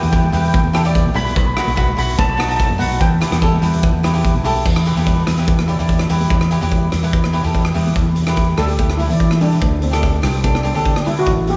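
A shimmering, metallic steel pan, played with medium rubber sticks and trailed by a diffuse ambient delay, carries the lead melody in this intense, driving calypso excerpt, falling silent at 4.2 seconds and returning at 8.6 seconds. Beneath it, a crisp, picked acoustic cavaquinho supplies the accompaniment until 11.3 seconds, while a growly, amped fingered electric bass is the loudest part. A raw garage drum kit, saturated and gritty with a punchy kick and a pumping stone-room sound, drives the straight 4/4 groove with crash cymbal, hi-hat and rim click. High-tuned congas with a thick-skinned tone, played with soft hands in a small room, sit very quiet in the background. The harmony moves through Em, Bsus4 and B7 before later shifting to Em7 and D7sus4, all inside a dreamy mix soaked in a moderate cathedral reverb.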